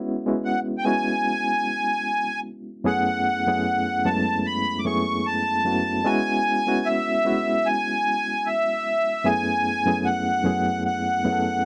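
Introspective and sultry, this R&B fragment moves at a slow 75 BPM in 4/4 with a light sixteenth-note swing, sitting in F# minor as it alternates between C#m7 and F#m9. A reed electric piano carries the accompaniment from the start, lightly overdriven and shimmering with fast tremolo through its built-in speakers. A sweet, reedy accordion takes the melody from 0.4 s with its light tremolo tuning, and both instruments sit up front in a dry, close 1970s-style studio sound.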